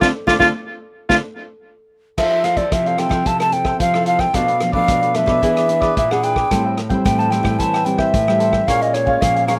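Yearning yet lively, this short cut from a longer samba and choro piece moves at 111 BPM in a straight 4/4, centred on F major. It opens with a band accent in which a breathy alto saxophone sounds a single F4 with a soft, subtoned attack and light vibrato, gone by 1.2 seconds. Under it, a crisp picked cavaquinho and a fingerpicked nylon-string guitar play accompaniment, both carrying a slapback echo, while a second nylon-string guitar holds down the bass with a deep classical tone and audible finger squeak. A vintage drum kit with dark cymbals, a tight kick, a medium-tuned snare, rim clicks, hi-hat and crash keeps time with a rolled-off top. From 2.2 seconds a mellow, hollow alto recorder takes an up-front solo between Db5 and A5, its tongued chiff and vibrato riding over chords that move from Fmaj7 through Bm7b5, E7 and Am7 to Bbm7. The sound is dry, recorded outdoors with little reverb.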